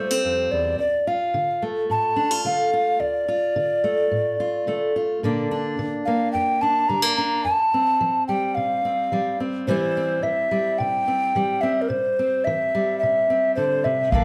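A straight 4/4 pulse carries this wistful, yearning folk fragment, cut from a longer piece, where a breathy tenor recorder with a hollow chiff and vibrato sings the melody up front over fingerpicked steel-string acoustic guitar, its fresh strings catching the occasional finger squeak. The harmony moves from Fsus2 through Dm and Bb back to Fsus2 before landing on C, all captured as a band playing live in one room with a moderate large-studio reverb. Only at 14.1 s does a woody, thumpy pizzicato upright bass on gut strings sound a single low note.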